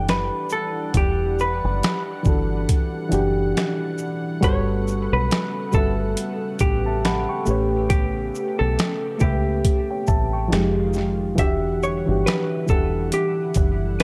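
A hazy, reflective lo-fi hip hop excerpt heard through a moderate spring reverb, where a dark, picked hollow-body jazz guitar carries the melody over a reedy, worn, slightly out-of-tune electric piano with a cassette-tape treatment, a lush detuned unison pad with chorus, a round, foam-muted dub bass up front, and a gritty, pitched-down boom bap kit with a thumpy kick, snare, hi-hat, shaker and finger snaps, moving from Em9 through Gmaj9#11, A9 and Fm9 back to Em9.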